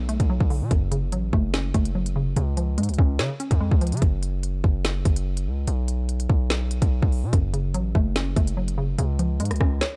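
A hollow, detuned square-wave pluck with chorus opens this menacing drill cut alongside a distorted 808-style bass, with the drum kit arriving a tenth of a second later at 145 BPM in a half-time 4/4 feel. The key is F# harmonic minor, and the short, bouncy pluck outlines a shadowy progression moving from Bm7 through F#m to C#. The pluck drops out at 4.0 seconds and returns at 7.3 seconds, leaving the saturated, heavy bass and the drums up front in between. That bass is aggressive and sine-based with a noise layer, hitting hard and then decaying. The electronic kit pairs a hard-clipped kick with a woody snare, rim clicks and crisp hats. Set in a dark digital ambience, this excerpt, taken from a longer piece, reaches a break at 9.8 seconds, when the bass stops.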